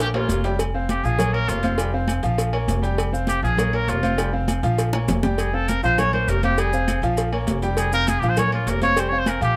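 A clear, punchy trumpet with light vibrato carries the solo up front from 0.9 seconds in this driving, fiery salsa cut from a longer piece, over a bright baby grand piano with audible action noise, a woody, thumpy pizzicato upright bass on gut strings, round low-tuned cowbell and bongos, ringing metal-shell timbales and agogo bells, high-tuned congas played with soft hands, and grainy maracas, with drum fills at the opening and near 4.9 seconds and a light reverb around the band.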